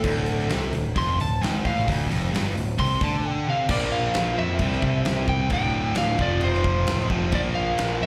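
A straight 4/4 pulse at 132 BPM drives this menacing, aggressive hard rock fragment in D minor, cut from a longer piece and heard as a live gig through the venue's PA with club reverb. A huge arena drum kit anchors it with a fat snare, punchy kick, hi-hat and crash, sounding acoustic in a big room until 7.9 seconds. A growling picked electric bass, overdriven and bright, sits beneath a high-gain distorted guitar riff carrying slapback echo, while an overdriven semi-hollow guitar adds a hollow-body riff in the background. A lightly driven, compressed lead guitar with a slightly broken-up tone and its own slapback echo takes a solo over the opening D minor chord until 3.7 seconds. From there the harmony shifts through Bb5, C, D5 and F5 before returning to Bb5.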